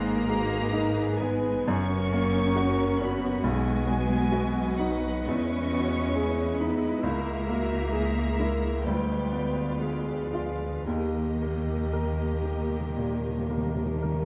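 A clear, open baby grand piano carries the melody from the first moment of this brooding, tragic classical passage, moving in rubato at roughly 54-73 BPM over chords of G#m, F# and B. A focused, bowed violin section with vibrato sings above the piano, while a smooth second violin line, distant violas, lush cellos and a mellow, roomy French horn section holding sustained chords sit in the background, and a close, up-front double bass section anchors the low end. The harmony moves through Emaj7, A#m7b5/C# and Ddim7 before arriving on D# at 10.9 s, where articulate hard-mallet timpani on calf heads enter with a fill, all within moderate scoring-stage reverb and a dark, warm production.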